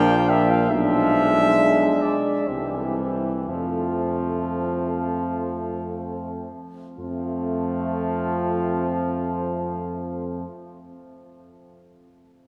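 A mellow, close-miked solo cornet carries the melody in this lyrical, serene hymn-like classical excerpt for brass band, in F major and 3/4 time. The feel is rubato, with the tempo moving between 47 and 72 BPM and slowing down over the first 7.0 seconds before a second passage begins. Beneath the cornet, a dark French horn section with light vibrato sits distant and roomy in the background on a second line, while a clear trombone section, also with light vibrato, and a brilliant, punchy solo trombone supply the accompaniment. A punchy tuba plays the bass up front. The harmony moves from Gm7/Bb through Bdim7 and C to settle on F, and the whole band rings in a wet cathedral reverb with a long decay.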